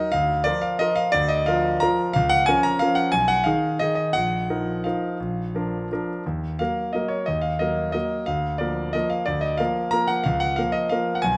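Captured by close, detailed microphones in a moderate recital-hall reverb, a bright concert grand sits up front with brilliant highs, deep bass and a smooth, vintage character. This wistful, bittersweet classical piano waltz moves in a rubato 3/4 at 166 to 193 BPM, tuned to A4 = 444 Hz, with the solo piano spanning Bb1 to Bb5 across the full 11.4 seconds. The harmony drifts between major and minor shades of Bb, passing through Abm/Cb, Bbsus4 and Ebm before returning to Bb/D and closing on Bbm/Db, a fragment cut from a longer piece.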